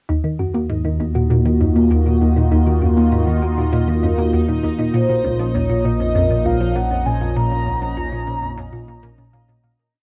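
A resonant, detuned sawtooth pad sits up front, its slow-attack chords warbling with a vintage, tape-worn character as they shift from Eb minor to Bb minor at 4.9 seconds in this short, hypnotic and mysterious piece of sequencer-driven ambient space music at 99 BPM in straight 4/4. Beneath it, a hollow, bouncy square-wave pluck repeats a 16-step riff with a moving notch, sampler grit and delay. A round, tine-like FM pluck with a noise layer spins a gentle five-step arpeggio that drifts against the bar. A deep sine sub bass holds the root. A bright, bubbling texture of random resonant filter steps on a held high note fades in and stays in the background. At 4.9 seconds a mellow, horn-like sawtooth lead enters up front with vibrato and arching motif phrases, and the whole piece fades out from 6.6 seconds, all wrapped in a small, wet booth ambience and the soft haze of a home cassette recording.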